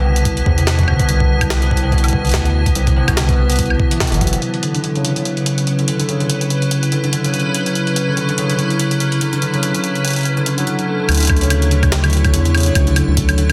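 A fingerpicked concert harp rings up front in this playful, intricate IDM excerpt at 144 BPM in D major, its arpeggios roughened by vintage 12-bit sampler grit, a low-pass filter and digital delay, with a filter sweep running across the middle stretch. Beneath it, an icy, crystalline glass pad holds sustained chords with chorus and its own reverb. A jungle sampler-style kit of hi-hat, high-tuned snare and woodblock drives a swung 16th-note feel with a gritty, tape-warmed, pitched-up character. A round, deep analog bass and a thumpy electronic kick in the background play through the opening, then drop out at 4.4 seconds, after a band accent and a drum fill, as the harmony shifts from Cmaj9 to Dmaj9. In that middle passage, a dreamy, reversed granular texture swells in the background until the bass returns at 11.1 seconds, with the kick following at 11.3. The mix has light reverb and a dense, heavily limited modern master.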